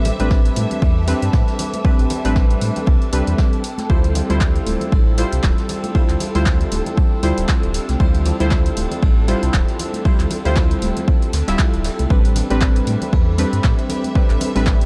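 An overdriven, punchy electronic kick sits up front in this late-night deep house excerpt, moving at 117 BPM in 4/4 with a 57% swing on the sixteenths. Beneath it a deep, full sub bass with octave anchors the Am11 to Dm11 changes, while round, detuned analog keys play sawtooth stabs through chorus, a low-pass filter sweep and dub echo. A warbling, lo-fi tape-like pad holds sustained chords in the background, joined by a lush, bowed studio string section with vibrato, and a silky string machine slips in at 13.3 seconds at a very low level. The rhythm bed layers overdriven handclaps and hi-hat from an analog drum machine with ringing, close congas and a dark-cymbaled jazz brush kit with ride and snare set far back. Sidechain pumping breathes through the pad, keys, bass, strings, congas and brush cymbals, and the whole piece sits in a small, dark-sounding room.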